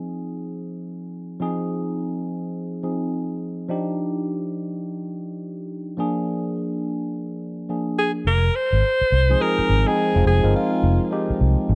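A small-room recording of a punchy, bouncy new jack swing R&B passage at 105 BPM in F dorian, it opens on a clean tine electric piano through a combo amp, phased and filtered with a sweep over the first 8.3 seconds across Fm7, Ebmaj9 and Bb7, before a breathy, jazz-style alto saxophone solo with vibrato, scooped notes and delay enters up front at 8.0 seconds and a dark, round, foam-muted fingered electric bass joins at 8.3 seconds.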